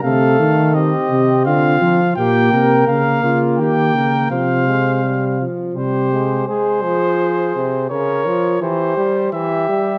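Moderate recital-hall reverb surrounds this driving yet contemplative classical canzona for brass ensemble in F minor at 84 BPM in 3/4, cut from a longer piece, where an up-front, mellow trumpet carries the imitative melody with light vibrato over a soft-attacked flugelhorn second line and a clear, distant, roomy trombone accompaniment, while a smooth-topped bass trombone anchors the bass until 6.4 seconds, just before the music turns toward a new section at 6.5 seconds.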